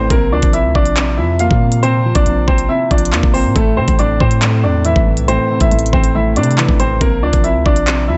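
Cold and menacing, this short cut from a longer drill hip hop track moves in a half-time feel, with a bright, woody upright piano carrying the melody through a low-pass filter and digital delay while a dark, vintage-toned grand piano, also filtered, supplies the accompaniment beneath it. A long, deep 808-style bass with a fast attack and mellow sine decay anchors the harmony as it moves from Bbsus2 to Am and back to Bbsus2 at 7.0 seconds. Up front, an electronic drill kit of knocking kick, crisp hi-hats and handclaps runs from 0.1 to 8.0 seconds, all set in a studio ambience with its top end rolled off.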